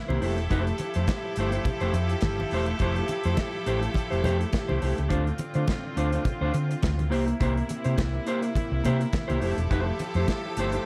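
Set in a light small-room reverb, this sultry, danceable disco passage at 104 BPM, with a slight sixteenth-note swing, pairs a round, up-front hollow-body fingered bass and a mellow, clean electric guitar with a dark, tight-kicked studio drum kit, bright damped congas in the background, and a biting chamber string section holding sustained chords over Fmaj9, Dm7 and C7.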